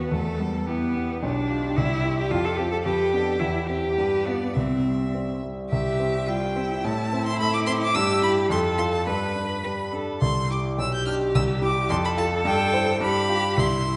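In a straight 2/4 at 107 BPM, this cheerful, graceful classical-period piano trio movement in C major sets a smooth violin melody with vibrato over a focused cello second line and an intimate, up-front concert grand whose deep bass and audible action noise carry the accompaniment through all 14.0 seconds, moving from its opening section into a new one at 5.7 seconds inside the wet bloom of a scoring stage.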